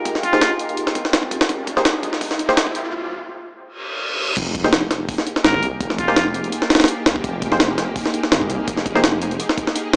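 Silky string-machine chords open this nostalgic, atmospheric drum and bass and jungle excerpt in F minor at 167 BPM, soon joined by compressed, pitched-up sampler drums with a thumpy kick and high-tuned snare up front, muted dub chord stabs with 12-bit sampler grit and echo in the background, and brief nasal phrases from a straight-muted trumpet under a filter sweep, while a riser, a break and a reverse cymbal build to the drop at 4.4 seconds, where an electronic impact hits and a thick, beating detuned saw bass arrives, captured in a dry, gritty cassette recording with a small-speaker sound.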